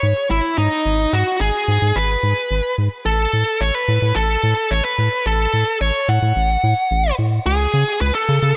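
Nostalgic and cinematic, this short synthwave excerpt moves at 109 BPM in a straight 4/4. A smooth, overdriven electric lead guitar carries the melody from the start, its bright, picked tone sitting up front with a trail of delay as it ranges from D#4 to F#5. Beneath it, a round analog bass plays through the whole passage, deep and dark with a fast attack and sustained notes, its wave-folded blend of square, sine, triangle and sawtooth shapes thickened by tube saturation. The harmony moves from G#m to F#m/A at 3.1 seconds, then lands on a C#5 chord at 7.5 seconds. A light reverb gives the pair a sense of space, and the two parts stay evenly balanced, both placed close and prominent in the mix.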